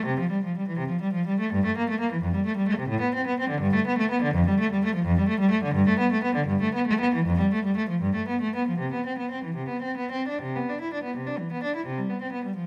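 A single bowed cello, rich and reedy with a gut-string, period-style tone, plays up front and close in this brief excerpt of a flowing, serene baroque-style suite movement in C major and 6/8, moving with a rubato feel at 66-88 BPM in dotted quarters, spanning F2 to E4 under light reverb, and shifting into a new section at 10.4 seconds.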